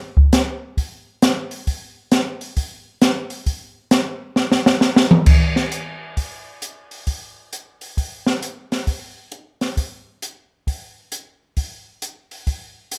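Swinging and bluesy, this short jazz excerpt moves at 133 BPM in 4/4 with a lilting swung eighth-note feel, carried entirely by an acoustic open jazz drum kit that plays from 0.2 to 13.0 seconds. The kit sits up front in a studio room with light reverb and close, detailed miking, pairing dark cymbals and hi-hat with a high-tuned snare, boomy kick and toms. A drum fill from 4.4 to 5.3 seconds marks the move into the second section.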